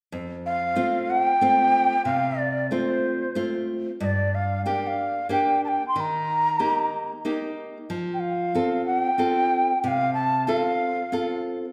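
A fingerpicked nylon-string guitar opens at 0.1 seconds, bright and classical in tone, setting out an Andean folk passage at 93 BPM in 3/4 with a straight feel. At 0.5 seconds a large quena joins up front with the melody, its woody, breathy voice carrying gentle vibrato, a soft attack and rolled-off highs. The guitar moves from F to Gm, then Eb, and back to F, giving the passage a melancholic, earthy mood, with the tuning sitting slightly above standard at A4 = 441 Hz. Both instruments sit close, set in a recital hall whose reverb lingers for about 1.5 seconds. This brief passage is cut from a longer piece, and the quena holds its line until 11.4 seconds while the guitar rings on to 11.6 seconds.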